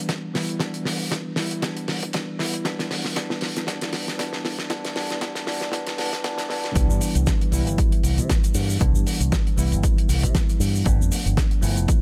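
A clean, bell-like tine electric piano opens this groovy, sunny nu-disco excerpt at 117 BPM in C major, its Em7 chords pumping with sidechain and trailed by tape echo, as a dry, damped 70s drum kit with a fat snare, hi-hat and shaker joins a punchy, layered electronic kick through a build-up and drum fill, until at 6.8 seconds the drop arrives with a bright, amped, envelope-filtered fingered electric bass moving through Cmaj7 and G7, all set in a studio ambience.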